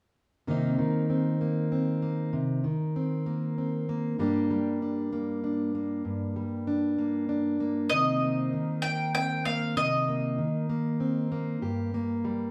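Folk in 6/8 at a slow 65 BPM, this short excerpt feels nostalgic yet anthemic, with a straight, unhurried sway. A fingerpicked plugged-in steel-string acoustic guitar carries the accompaniment throughout, its jumbo body giving a warm, full-bodied sound with fresh strings, placed up front. The harmony moves between Cm7 and Gm, and at 7.9 seconds a second section begins as a mandolin enters with the melody, playing between Eb5 and G5 until 11.3 seconds. The mandolin's picked double strings have a warm, woody character and sit up front beside the guitar. Both instruments share a small room, as if the band were playing live together, wrapped in a stony room reverb that lingers for about a second.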